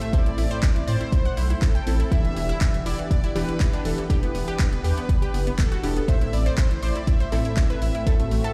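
Heard as if played on a big sound system in a bare stone room, this short cut from a longer progressive house piece at 121 BPM in E minor feels expansive and emotional, with an up-front deep electronic kick, a thick, saturated sub bass entering at 0.1 s and pumping with the sidechain, a deep house kit of handclaps and dark hi-hats, bright, chorused analog pluck arpeggios and punchy, wave-folded unison pluck stabs trailed by tape echo, a mellow, warm analog pad holding sustained chords in the background, and an evolving, smooth soft supersaw melody carried on dub echo, over chords that move from Am to Em7 at 2.1 s and back to Am at 6.1 s.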